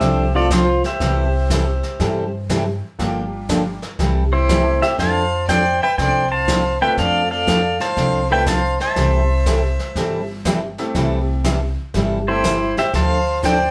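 A band playing live in one room fills a studio space with a wet reverb in this playful, swinging western swing excerpt, taken from a longer country piece at 121 BPM in 4/4 with swung eighth notes and centered in C major. Up front, a twangy, compressed pedal steel guitar carries the melody, played with fingerpicks and slide, its clean tone shaped by volume swells. A clear, earthy fiddle with light vibrato bows a close second line, while a bright, full-bodied dreadnought acoustic guitar is picked for accompaniment. A woody pizzicato upright bass on steel strings sits up front, and a brushed jazz kit with a medium-tuned snare, hi-hat and boomy kick keeps time. A brilliant, polished upright piano with long sustain adds accompaniment in the background from 0.3 to 12.4 seconds, over harmony that moves through F6, C6 and Gm7 before touching Dm7 near the close.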